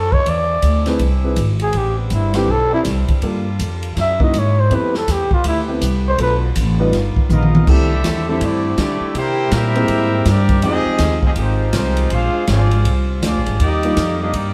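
Energetic and swinging, this big band swing excerpt opens with a veiled, growling bucket-muted trumpet carrying the melody up front over woody pizzicato upright bass, a punchy drum kit with dark cymbals, and a tight, bright saxophone section holding sustained chords in the background, while a natural-sounding grand piano comps from 0.9 seconds. After a drum fill at 7.3 seconds, a smooth-topped trumpet section takes over the melody with a soft-attack trombone section voicing a second line beneath, moving through rich extended harmonies. A moderate echo-chamber reverb places the band a little further back in the room.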